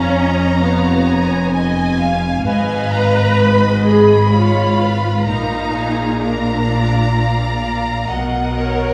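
From the first moment a full string orchestra sounds together in a slow, elegiac and yearning romantic movement in 3/4 at 64 BPM with rubato, where a lush first-violin section sings the melody with expressive vibrato over a soft-attacked second violin line with portamento, focused violas, smooth, even cellos and a distant, lightly vibrating double bass section, all heard from further back in a reverberant recital hall with vinyl crackle as the harmony moves from C#/E# through Fm7b5/Ab and Bb to Bmaj7 at 8.1 seconds in this brief cut from a longer piece.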